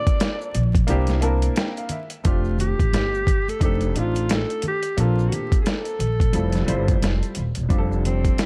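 Jazz-hop with a warm yet cool mood, this short snippet of a longer piece moves at 88 BPM in 4/4 with a swung sixteenth-note feel in F major. A breathy, whispered alto saxophone carries the melody with vibrato, scooped notes and a soft attack, touched by a slapback echo. Beneath it, a dark, worn grand piano comps through lush chords such as Bbmaj9, C9 and F13, its intimate sound full of audible action noise, and it plays a fill from 0.9 to 2.3 seconds. A gritty, overdriven sampler-style drum kit sits up front with a thumpy kick and a medium-tuned snare. A woody pizzicato upright bass with gut strings enters at 0.5 seconds, while very quiet maracas and congas add a bright, close layer. The dry mix carries a bed of vinyl crackle that gives the whole track a dusty character.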